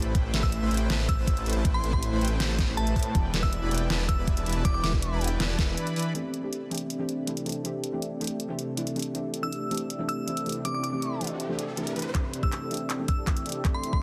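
A euphoric, lush future bass passage opens in the middle of a drop at 160 BPM, in a half-time 4/4 feel in C major. A smooth, full-bodied supersaw riff and a thick, detuned saw bass placed up front both pump with sidechain, over overdriven pop drums (deep snare, handclaps, hi-hat) and a knocking electronic kick. A glassy, crystalline FM bell melody rings out with tape echo, while an ethereal, airy pad holds sustained chords in the background, moving through Am9 and Em7. After a short break, the bass and kick drop away, and at 6.1 seconds a soft, round pluck enters with lush chorus and delay over a C69 chord; the bell returns at 9.4 seconds. An electronic riser arrives at 10.4 seconds, and at 12.1 seconds the kick comes back for a build-up with a drum fill and a filter sweep on the supersaw. The mix has light reverb and a dense, heavily limited modern master.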